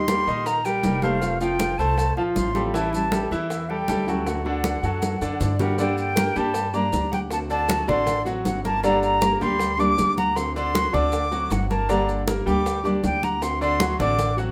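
An airy silver concert flute leads this sultry, danceable Cuban son and guajira piece, singing a tongued, vibrato-laced melody from a distant spot. A fingerpicked nylon-string guitar with a deep classical tone and a woody, thumpy pizzicato upright bass on gut strings sound alongside it from the first moment. A brilliant grand piano sits up front with glittering arpeggios, while damped, thin-skinned congas struck with hard hands and tight high-tuned bongos played with soft hands keep a background pulse, joined by grainy, saturated maracas, at a brisk 157 BPM in straight 4/4. The opening passage moves through Eb, F, A7 and D, and a drum fill from 5.0 s leads into a new section at 5.8 s. There the music settles into G harmonic minor and sways between Gm and D7. A moderate studio reverb gives the ensemble a sense of room, and the passage is cut from a longer piece.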